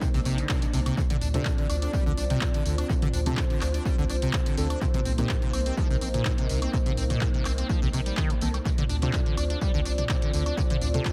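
An echo-heavy, dry-roomed acid house excerpt at 125 BPM in D phrygian, gritty and driving, built on an up-front punchy electronic kick and an analog drum machine of handclaps, hi-hat, tambourine, toms and woodblock with analog delay, under a squelchy, resonant sawtooth acid bass riff with filter sweep, tube saturation and dub echo, a thick saturated triangle sub bass and a moody detuned pad pumping on Cm7 and Dm7, while a very quiet swell enters at 0.2 seconds and a soft, wave-folded chord stab sits in the background from 1.3 to 5.3 seconds and again from 8.4 seconds.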